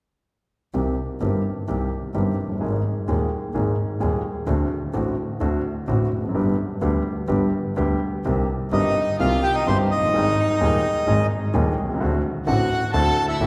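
This passionate, tense tango excerpt opens at 0.7 s with a woody, polished upright piano accompaniment and a biting bowed double bass with vibrato and an airy bow, moving in a rubato feel through C minor in a wet church reverb. At 8.7 s a reedy, dark bandoneon takes the melody up front, while a soft-attack chamber violin section plays a second line sul tasto with light vibrato, intimate and close.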